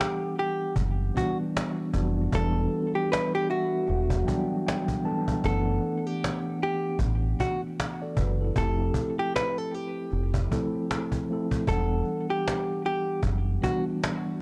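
A hollow-body jazz guitar, a mellow tine electric piano and a cajon open this hazy, melancholic lo-fi hip hop excerpt together at 77 BPM in 4/4, with a lazy 16th-note swing in E minor. The picked guitar carries the melody in a narrow range, its dark, compressed tone trailed by tape echo, while the electric piano plays clean accompaniment through its built-in speakers. The cajon sounds snappy, its snares rattling under soft hands in a live room, and a deep, round fingered electric bass enters at 0.8 seconds, sitting slightly louder than the other parts. The harmony drifts from Em9 through D69/F# and Fmaj9 before settling back on Em9. Every part sits up front in a dry, gritty recording colored by transformer saturation, cassette tape and a digital ambience, and the passage is cut from a longer piece, ending at 14.4 seconds.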